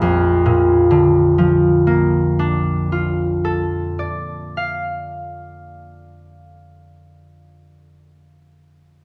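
Classical solo harp in B-flat major, this brief fragment cut from a longer piece moves in a slow, rubato 6/8 at 37 beats per minute with a graceful, dreamy mood. The concert harp sits up front, bright and ringing as it is fingerpicked across a span from Bb1 to F5, opening on a Bbmaj7 chord. A moderate recital hall reverb surrounds the instrument, and the harp sounds from the start until 7.6 seconds.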